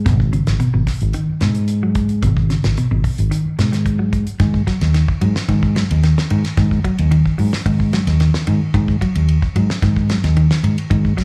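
A round, dark fingered electric bass sits up front in this hypnotic, defiant afrobeat excerpt at 111 BPM in G# minor, joined from 0.1 seconds by a clean, picked electric guitar playing arpeggios in the background and a dry, damped 70s drum kit with a fat snare and tight kick, all heard as a live gig through a small club's PA, moving from G#m to G#5 at 4.4 seconds.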